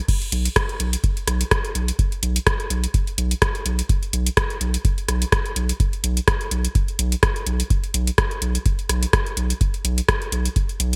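Dub techno with a hazy, meditative mood and a gentle swing, cut from a longer piece and framed in light digital ambience with a bright 1980s-style sheen. A booming analog drum machine sits up front with metallic hats, crash cymbal and rim clicks under gated reverb, alongside a deep, tape-warm electronic kick. Entering at 0.3 seconds, a round, dark analog bass with a nasal filter pluck and fast attack pumps against the sidechain as it sustains up front in the mix.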